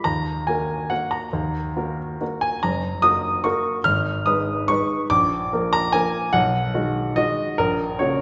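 A classical piano waltz in triple metre, this short cut from a longer piece feels nostalgic and elegant, its beats uneven and its pulse pulled and pushed with rubato. A single baby grand piano carries everything from 0.0 to 8.2 seconds, reaching from deep bass notes up into the high treble. The instrument sounds warm and present, placed up front so its tone feels close and intimate. Around it, a wet recital-hall reverb lends a lingering bloom, as if the piano were heard in a church or concert hall. The harmony moves from E-flat minor through G-flat, A-flat minor, B-flat and B6 before settling on a G-flat chord over B-flat in the bass.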